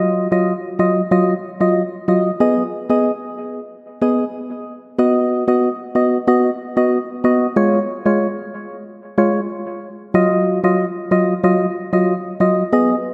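Dancehall at 93 BPM in Eb minor, tough and sultry, built on a lone percussive organ stab that plays solo from 0.0 to 13.0 seconds, moving through Ebmadd9, Abm, B and Db before returning to Ebmadd9. The organ has a hollow, dark tone with a fast attack and decaying notes, sits up front, and carries chorus and analog delay. A lush hall reverb soaks the whole dreamy mix, giving this short cut from a longer piece a heavy, late-night haze.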